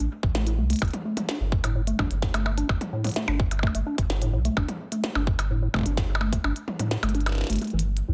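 A warm, round sub bass sits up front through this eight-second IDM excerpt, its sine tone sustained and mellow beneath an intricate, glitchy groove at 128 BPM in straight 4/4. Above it, a deep acid bass plays rubbery square-wave arpeggios with a resonant filter pluck that decays into darkness, trailed by dub echo. A glitchy drum kit scatters clicky hats, a tiny snare, toms and percussion blips, also fed through dub echo, with a tape-warm character and a re-recording in a large room. A tight electronic kick enters at 0.2 seconds, sitting forward with the same large-room tape colour, then drops out at 6.4 seconds, leaving the basses and kit to carry the final stretch. The harmony moves from A minor to a G power chord, and light reverb and a faint mains hum sit beneath the whole cut.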